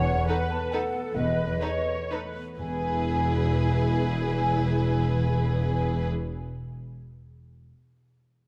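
A lush, up-front double bass section anchors this sweeping, festive orchestral ballroom waltz in E major, cut from a longer piece and moving at a rubato 118-146 BPM that slows through the first 2.6 seconds, as a dark cello section sits in the background, a focused viola section fills the accompaniment, an airy, straight-toned flute ensemble carries a second line, a mellow, ringing harp plays background arpeggios, and from 0.3 seconds a smooth, even chamber violin section takes the melody over an expressive, soft-attacked studio violin second line, all settling from B7/E onto E in a moderate concert-hall reverb.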